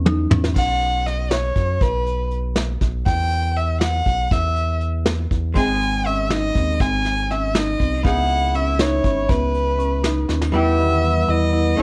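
Set in a straight 5/8 at 240 BPM (eighths), this intricate, bright progressive instrumental, cut from a longer piece, rides a round, deep analog bass and up-front brush kit with dark cymbals while a nasal, expressive violin carries the melody from 0.6 s over woody marimba arpeggios and a clean, double-tracked archtop guitar in the background, until a breathy, whispered flugelhorn adds a second line at 10.6 s, all colored by light reverb and the warbling pitch drift of worn cassette tape.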